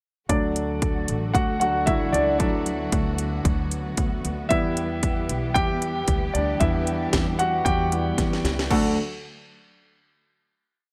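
At 0.3 seconds a polished grand piano leads this short, hopeful piano-driven pop piece in D major at 114 BPM, playing a solo in close-voiced eighth-note chords with a subtle chorus, moving from D to E minor over a lightly swung 16th-note feel. Beneath it, a punchy, layered electronic house kit stomps out a four-on-the-floor beat with a cracking snare, metallic hats and crash cymbal, all carried by a gated reverb. A woody pizzicato upright bass on steel strings holds a round, sustained line with slides. A dark studio string section adds a lush, bowed pad with expressive vibrato and a smooth top. A drum fill at 8.2 seconds leads into a final D chord at 8.7 seconds, and the bright 1980s-style digital production sits in a small, lightly reverberant room with the piano and drums up front.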